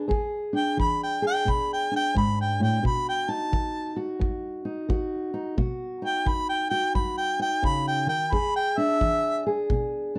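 Swaggering and soulful, this short cut from a longer acoustic country blues piece swings at 88 BPM in 4/4, with a clear, up-front harmonica taking a jazz-tinged solo of soft-attack, scooped notes and light vibrato over a dark, fingerpicked steel-string guitar with audible finger squeak and a punchy brushed kick drum, all in moderate studio reverb as the chords move from E7 to B at 2.9 seconds and back to E7 at 8.3 seconds.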